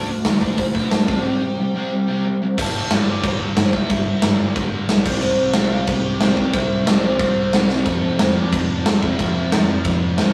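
In a straight 4/4 at 181 BPM, this rowdy, rebellious punk rock fragment drives a sludgy, double-tracked distorted guitar riff up front beneath a biting overdriven lead melody, with a round, amped picked bass sitting in the background and a big acoustic rock kit of punchy kick, medium-tuned snare, hi-hat and crash, its top rolled off, throwing in a fill at 7.7 seconds, all caught in a rough rehearsal-room sound with tube saturation and small room reverb as the harmony moves from D5 and C5 through G5 to C and F.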